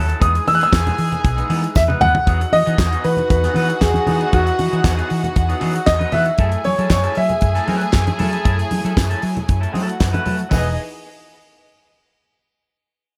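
A clear, intimate baby grand piano opens this celebratory disco cut at once, carrying the melody up front with audible action noise and a long sustain. It arrives alongside a bright, twangy picked electric guitar, a lush string section holding sustained chords in the background, and a dark, round, foam-muted fingered bass. A damped 70s drum kit with a fat snare, tight kick and rolled-off top drives the danceable groove with handclaps, hi-hat and toms, and plays a fill at 1.8 seconds. A violin section with a reedy gut-string tone, light vibrato and tape echo traces a second line, while low-tuned congas with soft hands and a jingly tambourine add percussion farther back. The harmony moves from Emaj7 to Emaj9 and then F#m7 in a dry, close-sounding mix.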